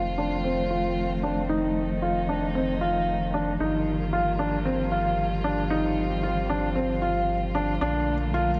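A moving, melancholic electronica excerpt opens with a felt-muted upright piano riff, intimate and mellow with audible action noise, passed through a low-pass filter sweep and delay, over sustained chords from a dark, woody string quartet with vibrato and a round, deep analog bass, all bathed in a lush hall reverb as the harmony moves from F7 to Bbmaj7.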